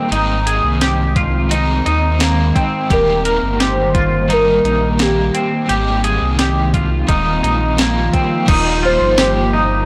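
Ethereal and floating, this short dream pop excerpt drifts at 86 BPM in 4/4 with a straight feel, set in Eb major over chords moving from Ab to Eb and an Ebadd9. A clean, twangy electric guitar picks arpeggios drenched in analog chorus and tape echo, while a crunchy overdriven guitar adds tremolo-shaded accompaniment and an airy, detuned pad holds slow-blooming chords through ensemble chorus and its own reverb. Underneath, a deep sine sub bass with an added octave sits up front with tube saturation, and a clean 12-bit drum machine supplies a thumpy kick, medium-tuned snare, hi-hat, ride, crash and tambourine with a sampler-style, small-room character. At 2.9 seconds a velvety, smooth synth lead enters with the melody, gliding with portamento through chorus and tape echo. The whole mix sits in light digital ambience yet sounds blown-out and overdriven, giving the hazy textures a saturated edge.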